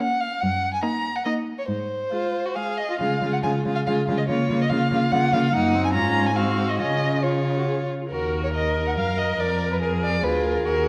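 Lively and graceful, this short excerpt from a quick classical-period string quartet movement moves in a flexible, rubato 3/4 at 133-147 BPM in D-flat major. The first violin carries the melody up front with a rich, expressive tone, vibrato and portamento. Beneath it sit a smooth, focused second violin and a clear viola, and the cello enters at 0.4 s with a warm, expressive bass line and its own portamento. The dark production sits in a moderate scoring-stage reverb, and the harmony settles on Db at 6.8 s before turning toward Ebm at 8.1 s.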